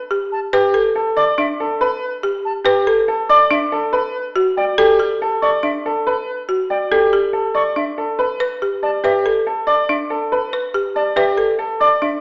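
A woody, percussive folk marimba with hard mallets sits up front, spinning arpeggios through this propulsive, hypnotic piece of minimalist classical pattern music in a straight 5/4 at 141 BPM, tuned to A4 = 445 Hz. A brilliant, worn grand piano carries the melody close by, while a distant silver concert flute adds pure, vibrato-tinged, tongued arpeggios higher up over A9sus4 and Gmaj7sus2 harmony. The sound has a wet recital hall reverb and a small-speaker quality, and the passage is cut from a longer piece.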